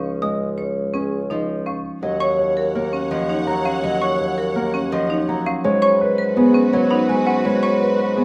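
In a straight five-beat metre, this meditative yet urgent slice of minimalist classical pattern music opens with a dark, intimate grand piano melody, its action noise faintly audible, over a ringing, fingerpicked Celtic harp placed up front and a mellow bassoon bass with light vibrato. Bright hard-mallet marimba arpeggios sound alongside woody, dry rubber-mallet xylophone arpeggios, and at 2.0 s a lush, bowed symphonic string section enters with sustained chords as the harmony moves from Dbsus2 to Ebm7 and then Abm7. A moderate large studio reverb sets the ensemble further back in the room, and the piece is cut from a longer work.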